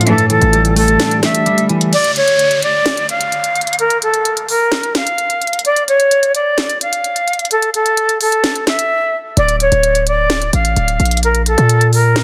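A brooding, hard-hitting trap excerpt in D harmonic minor opens at 129 BPM with a half-time feel. An airy jazz flute carries the melody up front, its breathy chiff and expressive vibrato trailed by delay. A clean, compressed semi-hollow guitar, played with the fingers, and a very quiet, blurred granular pad hold an A7sus4 chord beneath it. A punchy, heavy 808 bass with a sine core and a noise layer hits briefly. The electronic trap kit drives throughout with a sharp snare, crash cymbal and crisp hi-hats. At 1.9 seconds the guitar and pad stop, and an electronic downlifter drops into an unharmonised break, leaving the flute and drums. After a short silent gap the decaying 808 returns at 9.4 seconds under Dm, moving to Bb5. Light digital ambience surrounds a dense, heavily limited modern master.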